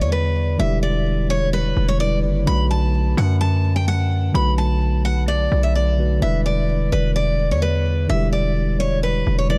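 A half-time trap groove at 128 BPM in 4/4 drives this brooding, menacing hip hop excerpt, moving from Em7 to Bm7 at 2.5 seconds and back to Em7 at 6.2 seconds. A distorted, saturated 808-style bass sits heavy and up front with a fast attack and decaying tail, while a picked steel-string acoustic guitar carries the melody between B4 and B5, close and present. Underneath, a mellow, clean tine electric piano supplies accompaniment, all in a dry, dark production.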